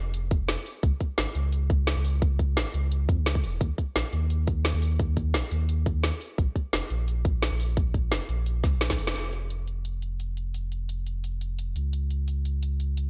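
Rolling and melancholic, this liquid drum and bass clip moves at 173 BPM in a straight 4/4, opening on a drop carried by a deep, full sub bass with octave, whose sine and triangle tones have a fast attack and long sustain. Up front sit a tight, layered electronic kick and an overdriven kit of woody snare and bright hi-hats, all under light digital reverb and a dark production. A drum fill at 8.9 seconds leads to a band accent at 9.1 seconds, and the kick drops out as the bass and kit carry the closing stretch to 13.1 seconds.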